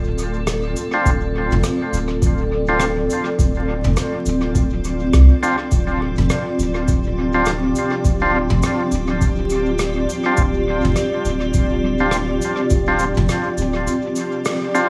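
Vinyl crackle and a light, small-room ambience frame this meditative, deep piece of ambient dub, cut from a longer work and resting on a single Dm7 chord with a swung sixteenth-note feel. A granular cloud pad sits up front from the start, holding blurred, evolving sustained chords with a slow attack, long release and its own built-in reverb. Beneath it, a round, soft dub sub bass with tube saturation anchors the low end. A brush kit of cabasa, rim click and toms drifts through dub echo, and from 0.9 seconds an overdriven tonewheel organ adds gritty, percussive stabs with key click and vibrato, also fed into dub echo. A tape-warm analog electronic kick, re-recorded in a compact space, enters at 1.1 seconds, and a band accent lands at 14.5 seconds.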